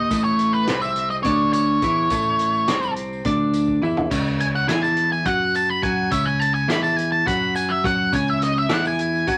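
Hypnotic and trippy, this short psychedelic rock passage in 7/8 is led by a dark, distorted octave-fuzz guitar solo placed up front, over a bright, clean, twangy twelve-string electric guitar riff and a punchy picked electric bass. A vintage acoustic drum kit with a rolled-off top and a tight kick plays throughout, with a fill from 3.7 to 4.1 seconds as the harmony moves from A to C#m, while a very quiet, jingly tambourine adds shimmer. Moderate studio reverb and a layer of vinyl crackle give the recording an aged character.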